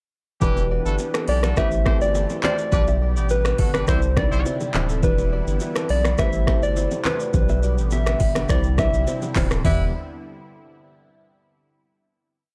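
Afrobeats at 104 BPM in E minor with a smooth, hypnotic feel, where a round, warbling FM synth lead plays hook phrases over a deep, saturated sub bass with a bouncy syncopated line and slides, an overdriven electronic drum kit with metallic hats and syncopated rim clicks layered with snaps, a tine electric piano pushing spread chords, an interlocking clean guitar figure doubled in sixths, a detuned sawtooth pad, quiet congas and bongos, and tight vintage horn riffs that drop out at 4.4 seconds before returning briefly as the piece settles on a final Em7 chord at 9.6 seconds, all captured in a dry, gritty hardware sound.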